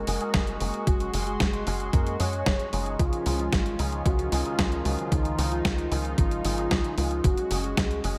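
A straight pulse of thumpy, overdriven electronic kick and a sampler-style drum machine's hi-hat and medium-tuned snare, gated reverb on the snare and hats, drives this sunny, playful italo disco fragment, where a tight, nasal sequencer bass pushes beneath a warbling, detuned analog pad with vintage 12-bit grit, dark envelope-filtered electric guitar stabs, and a round, full-bodied octave-layered synth lead with vibrato, phaser, tape color and digital delay, all over chords moving from Gbsus2 to Dbadd9 at 3.0 seconds and back at 7.2 seconds.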